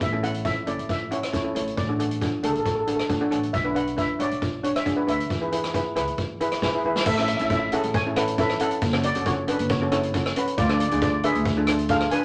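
A festive, sunny calypso in A major at 136 BPM opens with a shimmering double-seconds steel pan melody, struck with medium rubber sticks in a boxy small room, over pizzicato upright bass with a woody, steel-strung tone and an up-front street-band drum kit with a boomy kick, medium-tuned snare and dark cymbals. A second, smooth steel pan, played with hard rubber sticks and sitting close, fills in chords from 0.1 s, moving through A, D/A, Bm and E before a drum fill at 6.6 s leads into a passage over A, F#m and Dmadd9. The short, lively room reverb gives this clip, cut from a longer piece, a snug, warm glow.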